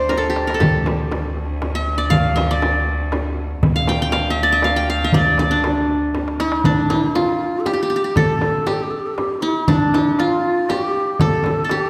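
Longing and soulful, this excerpt of an Arabic maqam ensemble piece in D maqam bayati moves at 119 BPM in a straight 3/4. A bright-edged, plectrum-plucked qanun carries the melody up front, while a clear, biting bowed cello holds a low D drone with light vibrato until 6.7 s. A small clay-shell darbuka and a bright frame drum, both played with soft hands, keep the pulse and add drum fills. A breathy, end-blown reed ney enters at 6.4 s with a tongued, expressive second line and vibrato, and the whole ensemble sits in a wet scoring-stage reverb, heard from further back in the room.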